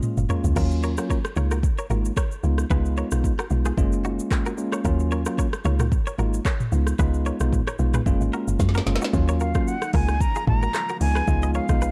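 A punchy, woody log drum bass grounds this sunny, romantic afrobeats excerpt, sitting up front beside a produced afro-pop drum kit with deep kick and metallic hats, while a bell-like electric piano holds the chords and a twangy, clean electric guitar picks a riff with delay; a breathy flute melody with vibrato and delay arrives at 9.4 seconds, joined at 9.8 seconds by a very quiet, glassy FM pad, the mix set in a dark digital ambience.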